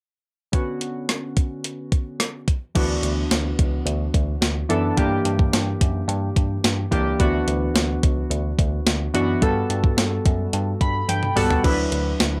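A light reverb wraps this romantic, uplifting 1980s-style pop excerpt in D major at 108 BPM, where round analog keys with a chorused pulse-and-sawtooth tone and a filter sweep sit up front beside a clean 12-bit drum machine whose thumpy kick, medium-tuned snare, hi-hat, rim click, toms and crash carry overdrive and were re-recorded in a small room. At 2.8 seconds a bright, bell-like tine electric piano enters to carry the bass line as the harmony moves between D69, Gm6 and Gmaj9. The keys and drums each play a short fill near the end, the drum fill landing at 11.1 seconds.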